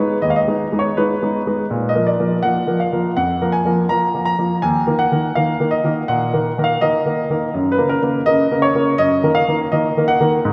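Classical-period piano sonatina in a serious, restless mood, set in a straight 4/4 and cut from a longer piece. A single grand piano carries the whole passage from 0.0 to 10.5 seconds, its tone clear and present, placed up front in the mix. The part spans from Eb2 up to Bb5, drawing on both the deep bass and the upper treble of the instrument. The harmony moves from Abm through Bb5 and Eb5 to Gb, settling on Ebm/Gb at 9.0 seconds. A wet cathedral reverb with a long 4.4-second decay surrounds the piano, giving the sense of a church or concert hall.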